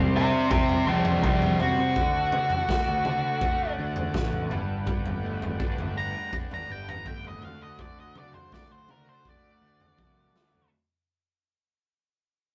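Psychedelic rock at 82 BPM in a straight 4/4, this short, hazy, hypnotic passage is cut from a longer piece and fades out across its whole length. A dark, up-front octave-fuzz lead guitar carries a distorted solo melody from 0.2 seconds, ranging from D4 to Bb5 over chords moving from Csus2 to D, Gadd9 and back to D. Beneath it, a bright, double-tracked overdriven electric guitar plays a riff through a rotary speaker, while a vintage, buzzy combo organ holds overdriven sustained chords with light vibrato. A round, fuzzed picked bass anchors the low end, and a raw garage drum kit of kick, snare and toms enters at 0.5 seconds with a boomy kick, gritty saturation and a rolled-off top, closing on a drum fill at 10.0 seconds. The rough rehearsal-room sound carries tube saturation and a short, wet ambience that pumps around the up-front drums.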